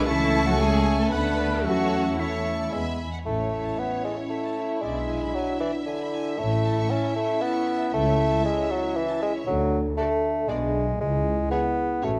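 Classical-period symphonic movement in A major at 116 BPM in 3/4, spirited and lively, cut from a longer piece, with a lush, expressive violin section carrying the melody over a focused second violin line, an up-front, clear bassoon and distant violas in accompaniment, dark sustained French horn chords, and a bass of shadowy double basses and smooth cellos. Airy flute, vintage-toned oboe and a very quiet, mellow clarinet add second lines only in the opening 3 seconds before those three drop out. The music moves into its second section at 3.3 s, and the whole ensemble sits in a moderate recital hall reverb.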